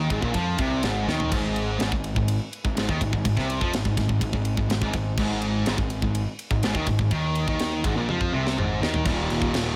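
A bright, high-gain distorted guitar riff leads this epic, heavy metal excerpt at 124 BPM, joined by a compressed distorted guitar in the background and a growly fuzz bass, while a tight, up-front drum kit with a high-tuned snare, crash, ride and toms drives a single section from Ab5 to Eb5, marking drum fills at 1.1 and 8.1 seconds in a small room with light reverb.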